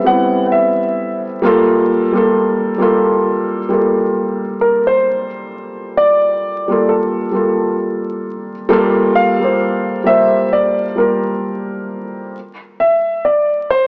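A dark, woody upright piano carries the melody through analog delay and a cassette haze, while a felt-muted upright piano with audible action noise adds soft, intimate accompaniment until 12.4 seconds, giving this melancholic, nostalgic swung hip hop fragment a vintage home-recorded feel of spring reverb, vinyl crackle and small-speaker sound as the chords move from Am9 to Gm9 before falling away at 12.3 seconds.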